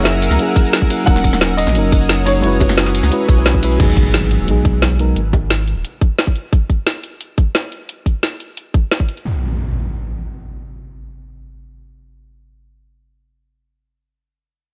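A tight, up-front electronic kick and a layered drum-and-bass kit with a woody snare and bright hats drive this dreamy, lush liquid drum and bass fragment, with tambourine, ride and crash cymbals in the kit and brief high-tuned bongos tucked in the background. Over a deep, round sub bass with tube saturation, a soft, warbling FM electric piano with chorus and digital delay carries the accompaniment. A shimmering, ethereal pad holds sustained chords while an intimate grand piano with audible action noise and tape echo plays a short melody in the opening 3.4 seconds. Electronic impacts land at 3.8 seconds and again at 9.3 seconds, the second arriving just after the drums fall away, having carried on alone once the other parts stopped.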